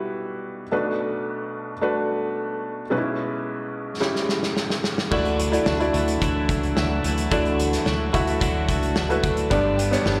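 A soft, mellow felt-muted upright piano with audible action noise and slapback echo opens this earnest, dramatic piano-driven pop cut at 109 BPM, a loose indie drum kit with dark cymbals and a tight kick arrives with a fill at 4.0 s, and at 5.1 s a round, foam-muted electric bass, a bright, twangy twelve-string electric guitar riff with its own slapback echo and a detuned sawtooth pad with chorus in the background enter together as the harmony shifts to Dadd9, all heard as a live gig through the venue's PA in recital hall reverb.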